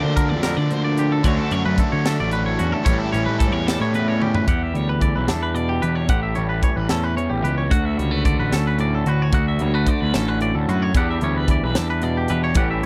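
This clip from a longer piece opens with a fuzzy, overdriven picked electric bass, round and punchy and sitting up front, alongside the guitars, in a wistful, intricate slice of math rock and midwest emo in D major at 74 BPM in 6/8. Two twangy clean electric guitars play throughout: one picked and compressed, bright in its accompaniment, the other fingered and mellow, spinning high arpeggios. A biting, double-tracked overdriven guitar riff sounds only for the first 4.5 seconds. The crisp fusion kit, airy and polished with a high-tuned snare and a punchy kick, comes in at 0.2 seconds and plays a drum fill at 4.2 seconds, just before the riff drops out. The harmony moves from Bb/D through Dmaj7 and A7, then Em7, A7 and Dmaj7 in the second section. The sound is dry and close, like a 1970s studio recording.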